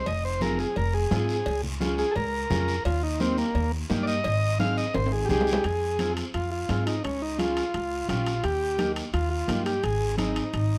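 A brisk, straight 4/4 cumbia pulse at 172 BPM in F minor drives this danceable, passionate excerpt, where a reedy, overdriven vintage combo organ with light vibrato carries the melody up front from 0.0 seconds, soloing over the cycling Fm, Db, Eb and Ab chords until a drum fill at 4.9 seconds leads into the second section at 5.6 seconds, supported by a woody, thumpy pizzicato upright bass, a dark, clean fingered electric guitar, ringing congas in the background, close, dry metal-shell cowbell and timbales, and a raspy, distant guiro, all in light reverb.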